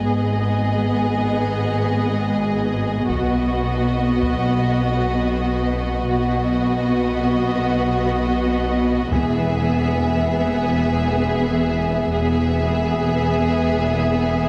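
A dark, distant violin section carries the melody with expressive vibrato in this heroic, dramatic excerpt from a cinematic orchestral film score, unfolding in free time as a single build-up lasting 14.5 seconds. Beneath it, a second violin section holds a smooth, even line, while violas sit close with a soft attack, lush tone and portamento on a sustained B. Cellos and a rich, focused double bass section anchor the low end, with the cellos as the most prominent part of the ensemble. The harmony moves from G# minor to B at 3.1 seconds and on to E at 9.1 seconds, and a taiko ensemble struck with hard sticks enters in the background at each of those changes with a saturated, compressed punch. The strings bloom in a moderate concert hall reverb, yet the whole is squeezed into a heavily compressed, radio-like sound.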